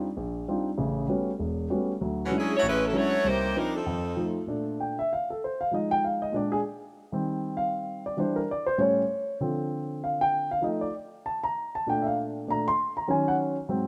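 A dark, mellow grand piano with audible action noise and short sustain opens this brassy, energetic up-tempo jazz swing at 195 BPM, a tight, bright saxophone section with light vibrato stating the melody from 2.3 to 4.3 seconds before the intimate piano takes a solo from 4.5 seconds over extended chords, all set in a moderate echo chamber reverb.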